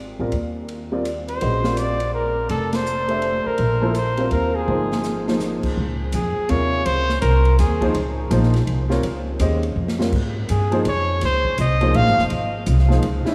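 Drenched in a vast, echoing cathedral reverb, this short excerpt of modal jazz in a swung triple metre feels open and spiritual. A woody, thumpy pizzicato upright bass sits up front with a warm upright piano supplying the chords, while a mellow, forceful trumpet with scooped notes and a smooth top carries the solo melody from 1.3 seconds. An airy, polished big-band drum kit swings beneath on ride, hi-hat, snare, punchy kick, crash and toms, marking a band accent at 2.7 seconds and adding fills, and the harmony moves to a new modal centre at 5.8 seconds.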